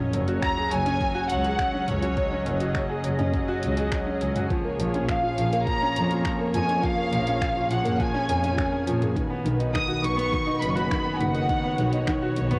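Piano and strings electronica in F# major at 103 BPM, hopeful and tender, this short excerpt opens on a background sub drop impact as a bright, woody upright piano riff rings up front through tape echo and shimmer reverb, over veiled, con sordino string chords that pump against the beat. A soft-attack bowed double bass section sits distant and floating beneath, while a smooth violin section carries the melody with light vibrato from 0.4 seconds. A deep electronic kick and a deep house kit of finger snaps, hi-hat and toms, both with a cassette tape tint, underpin the chords as they move from F#sus2 through A#m7 to B in a modest room, all captured as a home cassette recording.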